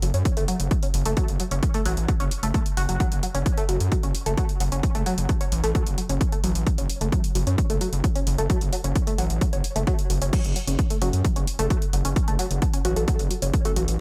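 A straight 4/4 pulse at 131 BPM drives this dark, intense peak-time techno excerpt in F# minor over an F#5 chord. The crash and hi-hat of an analog drum machine open the excerpt alongside an up-front, gritty synth bass with distortion, filter sweeps and sidechain pumping, and a heavy, overdriven electronic kick enters at 0.3 seconds. A tight sequenced sawtooth riff, wave-folded and treated with chorus, phaser, overdrive, dub echo and its own sidechain pumping, runs through the mix from the start; a muted, detuned dub chord stab with cassette-tape colour and digital delay joins at 11.0 seconds, all in a dry, close sound.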